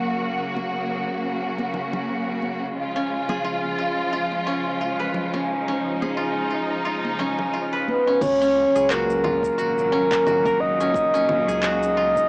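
A lush, bowed symphonic string section holds sustained chords from the first moment, clear and focused with vibrato yet set at a distance, its sound gently pumping and tinted by cassette tape. Alongside it, a silvery steel-string zither plucked with fingerpicks rings out arpeggios up front, trailed by analog delay, while an overdriven deep house drum kit of handclaps, shaker, crash cymbal and congas plays along, its percussion muffled by low-pass filtering and studio reverb. Close, dry acoustic congas join at 0.6 s in the background, lending this peaceful, organic downtempo fragment a relaxed swung feel. At 7.9 s a soft, breathy, flute-like synth lead takes the melody up front, its chorus and vibrato giving it a hazy shimmer, and at 8.2 s a round sine sub bass and a deep, layered electronic kick enter low in the mix. The whole fragment sounds like a home cassette recording played through a small speaker, wrapped in a brief, damp booth ambience that keeps the warm mood intimate.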